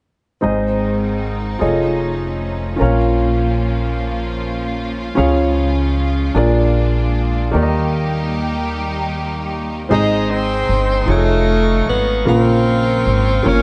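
A slow 6/8 sway at 51 BPM carries this uplifting, jubilant gospel excerpt in Ab major, where a clear, woody upright piano, a dark pizzicato upright bass and a smooth, bowed string section lay down the harmony from the start until, at 9.9 seconds, a breathy tenor saxophone with vibrato, scooped notes and slapback echo takes the melody over a reedy, lightly overdriven tonewheel organ turning on a slow rotary speaker, all bathed in a lush hall reverb.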